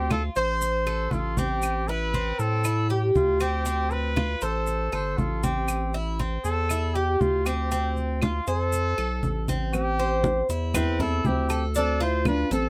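Warm and sultry, this short cut from a longer Cuban son and guajira piece moves at 118 BPM in a straight 4/4, settled in A minor and swaying between Dm7 and Am7 chords. A trumpet carries the melody up front, its tone warm and punchy with vibrato, yet set back in a roomy, distant space, while a Cuban tres spins bright, metallic arpeggios from its doubled strings. Underneath sits a deep, saturated sub bass with a fast attack and sustained notes. Low-tuned congas struck with hard hands give a thick-skinned, close thump, with woody claves and grainy, mellow maracas placed further back. At 9.7 seconds a fingerpicked nylon-string guitar enters with a full-bodied second line, finger squeak and all, adding a classical depth. The sound is intimate and detailed, with little reverb.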